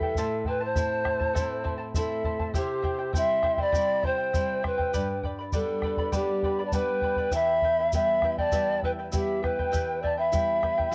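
A steady, straight 4/4 pulse at 100 BPM, marked by a round, dry bombo and a grainy tube shaker, carries this wistful, melancholic Andean folk passage in E minor, cut from a longer piece. Up front, a pan flute with a mellow, airy tone, soft attack and vibrato carries the melody with rolled-off highs, while a bright, close-miked quena plays a quieter second line above it. Beneath them, a fingerpicked charango with shimmering double strings, some doubled at the octave, and a classical nylon-string guitar with fresh strings accompany over a chord cycle of Am, C, G and Em. The flutes, charango and guitar carry a cassette-tape coloring, and the home recording has light reverb, studio ambience and a softened top end. The shaker enters at 0.2 seconds and stops at 10.5 seconds, while the other parts play through to 10.9 seconds.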